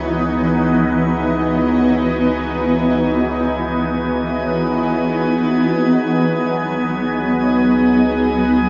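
Ambient music in free time, melancholic and serene, where a bright, ethereal pad with chorus and phaser sits up front in sustained chords, a round sine sub bass holds a deep low note beneath, and a glassy texture of drifting overtones floats above, all bathed in a lush hall reverb as the harmony moves from C#m11 to G#m7/C# at 5.8 seconds in this fragment cut from a longer piece.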